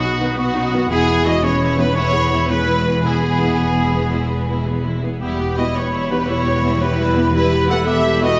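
Set in a steady 12/8 at 112 BPM counted in dotted quarters, this adventurous, heroic cinematic passage, cut from a longer piece, moves from B to E and then shifts to E minor at 5.2 seconds. A focused, lush violin section carries the melody with vibrato, joined by a distant second violin line, while a clear oboe, a dark clarinet and a hollow, airy flute section add quiet second lines. Rich violas supply accompaniment, mellow French horns and a very quiet trombone section from 0.2 seconds hold sustained chords, a roomy trumpet section adds stabs, and cello and woody double bass sections anchor the bass in a moderate scoring-stage reverb.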